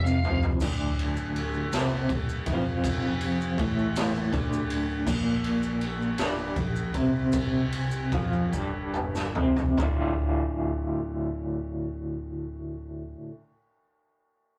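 Mysterious and dark, this short psychedelic rock excerpt in D minor moves in a slow 6/8 at 46-54 BPM, with a twangy, slightly broken-up electric guitar riff through a small old amp shimmering with tremolo up front, a punchy, gritty garage drum kit opening and later closing the passage with fills, a round overdriven picked bass sitting in the background, and grainy maracas tucked behind, all captured in a rough rehearsal-room recording with tube saturation as the tempo slows from 5.1 to 9.8 seconds before the guitar and bass carry on after the drums drop out, the bass until 13.1 seconds and the guitar until 13.3 seconds.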